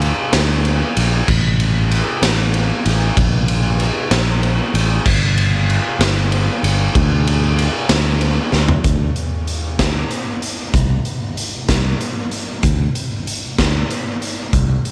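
Trippy and mysterious, this psychedelic rock excerpt moves at 63 BPM in a straight 6/8, built on just a fingered electric bass and a raw garage drum kit. The bass sits low and round, dark and amped, while the up-front kit is saturated and gritty, with a punchy kick, a medium-tuned snare, crash, ride, hi-hat and toms, all caught in a bright, pumping stone room with a rolled-off top. A drum fill at 8.5 seconds carries the groove into a new section at 8.8 seconds, and the overall mix stays dry with little reverb.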